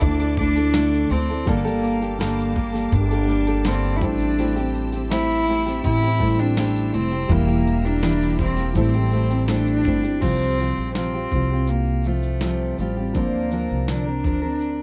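Wistful and tender, this acoustic pop excerpt at 82 BPM sets a floating, bowed cello melody over fingerpicked steel-string acoustic guitar with audible finger squeak, a woody upright piano in the background, a dark pizzicato upright bass up front, and a muffled, pitched-down lo-fi drum kit with thumpy kick, snare, shaker and crash, while a lush studio string section holds sustained chords until 10.2 s, all captured by close, detailed microphones with little reverb.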